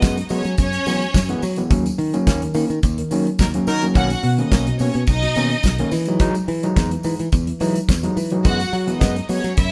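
From the first moment, a joyful, danceable disco groove is underway, anchored by a damped 70s drum kit up front: dry and acoustic, with a fat snare, a tight kick and hi-hat. A modern fingered electric bass adds a bright, growly line, while an overdriven tine electric piano, gritty and barky through a combo amp, carries the accompaniment up front as well. Above them, a lush bowed string section plays a focused second line with vibrato, set at a distance, and a jingly, compressed tambourine sits in the background. A band accent runs from 1.7 to 4.0 seconds, and within it a warm horn section lands a brief, roomy stab at 3.4 seconds. The chords move from F#9sus4 through D#m7, Bmaj7 and Emaj7 before returning to F#9sus4, and the players share a stone room with moderate reverb that gives the performance a live feel.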